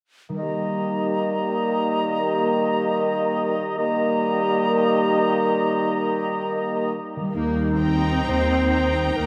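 Bathed in a huge, echoing reverb, this lyrical fragment of a slow romantic orchestral movement opens with a ringing harp arpeggiating in the background beneath an airy flute, a mellow clarinet, a distant oboe, a lightly vibrato bassoon and a warm French horn section holding sustained chords; flute, oboe, bassoon and horns fall away by 7.0 seconds, an up-front double bass section and focused cellos enter on the bass at 7.3 seconds, and at 7.8 seconds expressive violins enter with the melody over a smooth second violin line and distant violas while the harp and clarinet continue.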